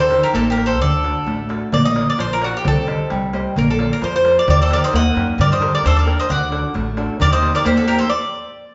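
Cool and brooding, this short cut from a longer Greek folk piece moves in a straight 2/4 at 132 BPM and gathers speed throughout. The picked Greek bouzouki carries the melody up front, its bright, metallic double strings with some octave-doubled courses cutting through the band. A bowl-back mandolin adds a picked second line in a warm tone, dropping out after 1.5 seconds and returning at 4.5 seconds, while a fingerpicked flamenco guitar supplies accompaniment and a woody pizzicato upright bass holds the low end. A crisp, high darbuka with a small metal shell keeps the percussion going. The band plays live in one room with a wet, large studio reverb and a dark top end, moving through harmonies such as Eb, D, Bb, Cm and Gmadd9 before everyone but the bouzouki has stopped by 8.1 seconds, leaving it to ring alone until 8.7 seconds.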